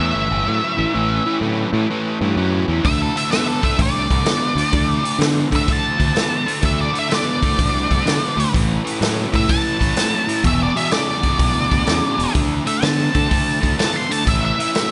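Driving and swaggering, this short cut from a longer piece blends blues rock power trio grit with a southern rock strut, swinging its eighth notes in 4/4 over a run of dominant chords from A7 through D7 and E7. An overdriven, double-tracked electric guitar pumps out a low riff up front, while a growling fingered bass, bright and overdriven, holds down the bottom. On top, a dark octave-fuzz lead guitar carries the melody in its high register, its distortion trailed by a slapback echo. Deep in the background, a very quiet tonewheel organ holds thick, gritty sustained chords through a slow rotary speaker with chorus vibrato. A vintage acoustic drum kit joins at 2.8 seconds with a punchy kick, a medium-tuned snare and hi-hat, sounding natural and close, and the whole band sits in a moderate hall reverb that gives it a big arena feel with a rolled-off top end.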